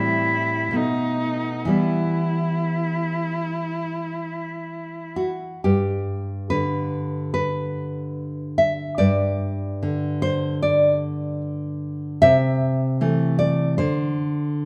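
In a free, rubato 4/4, this elegiac and solemn romantic duo, cut from a longer piece, sets a single bowed cello's rich, expressive melody, sung with vibrato, soft attacks and portamento, against full-bodied, fingerpicked nylon-string guitar accompaniment, both up front in a moderate recital hall reverb, until the cello stops at 5.2 s and the guitar carries on alone to 14.7 s.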